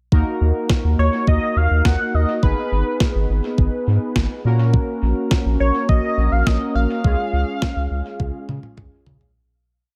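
A round, deep analog synth bass sits up front in this cool, melancholic synth-pop piece, joined by a thumpy, sampler-style 12-bit drum machine, dark chorused synth brass holding close-voiced chords, and a detuned, octave-doubled sawtooth lead that enters at 1.0 seconds with a mellow, vibrato-tinged motif trailed by dub echo, all in a dry, echo-heavy mix that begins fading at 7.0 seconds as a drum fill arrives at 8.2 seconds.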